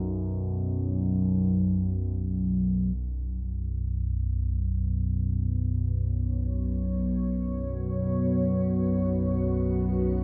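Unsettling and cavernous, this ambient passage drifts in free time and is cut from a longer piece. An analog drone holds the foundation from the start, up front and mellow, its nasal sawtooth and pulse-wave tones shifting through pulse-width modulation and a chorus effect, with a slow attack and long release. At 4.9 seconds a deep, moody pad enters beneath it in level, sustaining chords built from detuned unison sawtooths, a sine sub octave and a moving notch, washed in chorus, built-in reverb and shimmer reverb. The whole is set in a cathedral-like reverb with a 5.1-second decay, giving a dark, warm production. The two parts hold together until the close at 10.2 seconds, a brooding, evolving wash of sound.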